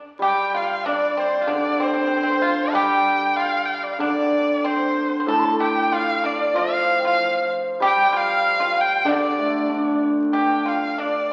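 This short fragment of a longer piece sounds like a very old 78 rpm record, with vinyl crackle over a wet recital hall reverb that lingers for about 1.3 seconds. A Chinese chamber ensemble plays in the traditional style in a tender, wistful mood, set in D yu mode at 95 BPM in 2/4 but taken with a loose rubato feel. Up front, a single bowed erhu carries the melody with a clear, smooth, even tone, shaded by vibrato and portamento. Beneath it, a large dizi adds a very quiet second line, airy and mellow, with the buzz of its membrane and tongued straight tones. The pipa, plucked with fingerpicks, gives a dry, percussive second line in a lower register. Also up front, a shimmering hammered dulcimer rings out the accompaniment from the start at 0.2 seconds until 11.0 seconds.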